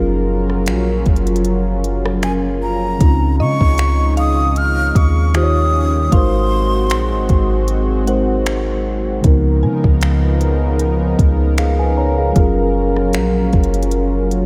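Romantic and tender, this contemporary R&B excerpt moves at 77 BPM with a gentle sixteenth-note swing in Db major. A mellow, clean tine electric piano and a shimmering, detuned pulse-width pad carry chords that pass through Gbmaj7, Dbmaj9, Eb9, Ab7 and Db13. A soft, round 808-style bass sits up front beside a crisp electronic drum kit of finger snaps, hi-hat, kick and rim click, while a breathy, expressive jazz flute with vibrato and delay carries the melody from 2.2 to 7.7 seconds, and a woody FM mallet-like pluck with chorus and delay sparkles in the background from 3.4 seconds, all set in a dreamy mix soaked in cathedral reverb.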